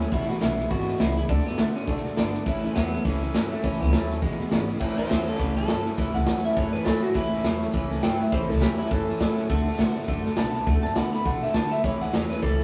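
A rough, tube-saturated rehearsal-room sound with small-room ambience carries this upbeat, rowdy rockabilly excerpt in A major at 205 BPM with a swinging 4/4 feel, where a gritty, punchy garage drum kit sits up front, a woody, thumpy pizzicato upright bass holds the low end while a boxy archtop acoustic with finger squeak adds picked accompaniment in the background, a lo-fi, slightly broken-up electric guitar through a small old amp carries the twangy melody, and a clean, phased electric guitar plays a riff in the background before taking a solo from 4.8 seconds.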